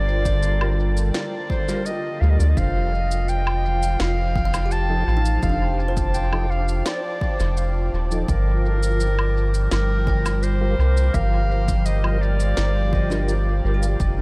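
Meditative and deep, this 84 BPM ambient dub excerpt in G minor sets a soft clarinet melody with tape echo over a round, tube-saturated sub bass, a dark detuned pad with chorus, woody kalimba arpeggios, a bubbling resonant filter texture in the background, a punchy overdriven kick with shaker, woodblock and woody snare on dub echo, and very quiet tonewheel organ stabs with slow rotary, all moving from Gm7 to F7 and back to Gm7 at 8.3 seconds.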